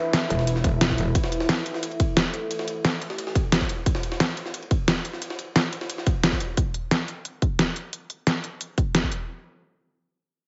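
Dark technical drum and bass at 177 BPM, tense and mechanical, where a deep, detuned sawtooth pad with chorus and reverb holds an E chord under a filter sweep until 3.8 seconds, a very quiet downlifter sounds in the opening moments, a metallic, saturated FM wobble bass bursts in briefly on E1, a punchy electronic kick and an up-front dubstep kit of deep snare and crisp hats drive on with a gritty, pitched-up jungle sampler kit of ride and high-tuned snare in the background, all squeezed through a heavily compressed, radio-like mix with light reverb.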